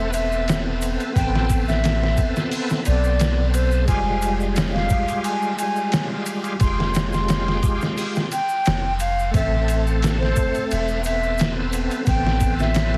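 Hypnotic and smoky, this 13-second trip hop excerpt at 88 BPM in A minor sets an airy, hollow concert flute melody with tape echo over a shouting tonewheel organ with key click, slow rotary speaker and chorus vibrato, a deep, round sub bass, a muffled, pitched-down sampler drum kit with a thumpy kick and overdrive, and a faint egg shaker, all moving from Amadd9 to Fmadd9 at 3.9 seconds and back at 9.3 seconds under light reverb, vinyl crackle and a heavily compressed radio sound.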